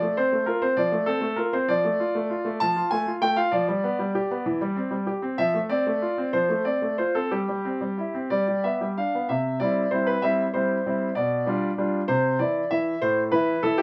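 A classical-period piano sonatina fragment, playful and graceful, moving in 6/8 at 65 BPM in C major with a flexible, rubato feel. A solo concert grand carries the whole passage, its tone bright and brilliant, with deep bass, an open character and long sustain, placed up front in a light reverb. The opening section runs to 9.3 seconds, drifting through harmonies over a bass that lingers around F before settling toward a cadence on G. A second section follows at 9.3 seconds, moving from C to G7 and back to C before closing on an A5 chord at 13.0 seconds. The piano spans from A2 up to A5, giving the short passage a poised, elegant shape as it is cut from a longer piece.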